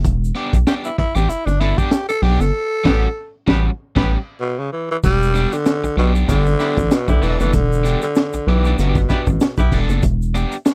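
A growling tenor saxophone leads this funk excerpt, its raspy, breathy tone sitting up front with a soft attack and a jazz-style solo feel through the opening section. Underneath, a rubbery square-wave bass bounces in a low, hollow register, dark and resonant with a fast filter pluck, while a crunchy breakbeat kit adds a punchy kick, a high-tuned snare and dark cymbals under a saturated, rolled-off top. An overdriven electric guitar with tremolo fills in the accompaniment, a grainy egg shaker ticks in the background, and a clear horn section joins at 2.8 seconds with tight, octave-doubled lines and light vibrato. The groove moves at 96 BPM in 4/4 with a gentle 16th-note swing in E dorian, circling between Em7 and A13, and the band hits accents from 2.5 to 5.0 seconds before a second section begins. The dry, close 1970s-style studio sound keeps the mood hypnotic and driving.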